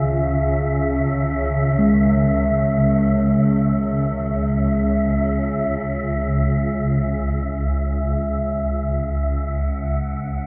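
Bathed in a cavernous cathedral reverb, this ominous, desolate dark ambient drone in C# minor drifts in free time, with a swarming, detuned, granular drone up front and an airy, breathy wind-like noise texture hovering high above it. From 1.8 to 8.7 seconds, a close-miked quartz singing bowl rings out in pure, meditative arpeggios with slow beating and tape echo. At 9.4 seconds a deep, moody pad slips in with sustained chords, barely audible beneath the murk.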